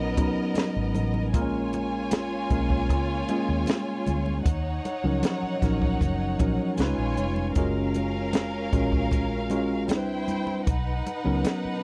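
A worn, slightly out-of-tune tine electric piano sits up front over a round, foam-muted fingered bass and a distant, bowed violin section with vibrato and soft attack, joined at 0.2 seconds by a small, dark cocktail kit with a high-tuned snare and punchy kick and by ringing congas in the background, in this dry, close excerpt of lush, romantic 1970s-style soul whose chords move from Bmaj7 through D#m7 and F#maj7 to a brief Cmaj7 before settling back on Bmaj7.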